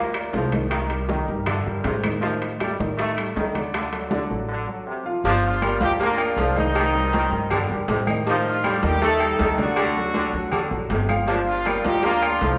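A warm, distant horn section carries the melody from 5.3 seconds over a punchy, bright trombone section, a clear but worn grand piano, woody pizzicato upright bass, and a bed of ringing congas, tight high-tuned bongos and cowbell, metal-shelled timbales with agogo bells, and very quiet claves in this driving, passionate salsa excerpt, all bathed in a wet recital-hall reverb and punctuated by a brief break at 4.5 seconds.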